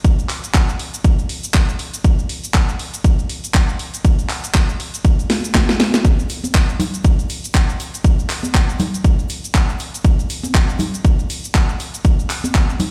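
A funky, nostalgic house groove at 120 BPM in 4/4, its sixteenths swung at 57%, cut from a longer piece. A punchy electronic kick sits up front from the start, layered and tape-warm, re-recorded in a large room. Alongside it runs a house drum kit of hi-hat, handclaps, cabasa and a cracking snare, its hats and percussion pumping against the sidechain. After a brief drum fill from 5.3 to 6.0 seconds, egg shaker and congas enter at 6.1 seconds, close and ringing with hard hands, adding an acoustic, hand-played texture that also pumps with the sidechain. A digital ambience frames the whole groove like a big sound system playing into a bare stone room, lending the loop an echoing character.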